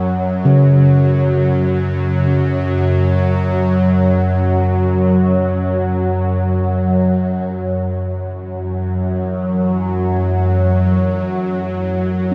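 A huge, wet reverb with an 8.6-second tail turns this fragment of a longer dark ambient drone into an ominous, vast space in free time, built on a bright, tense, string-like bowed drone up front that spans F#2 to F#3 with phaser and vibrato, while round, beating bronze gamelan-type bossed gongs play arpeggios on C#3 through a diffuse ambient delay from 0.5 seconds. At 7.5 seconds the harmony settles from an open F#5 onto F#m as a very quiet, band-limited bronze singing bowl adds a meditative ring with slow beating on F#4. At 11.9 seconds a deep, moody pad with sub-octave weight and chorus slips in beneath, barely audible.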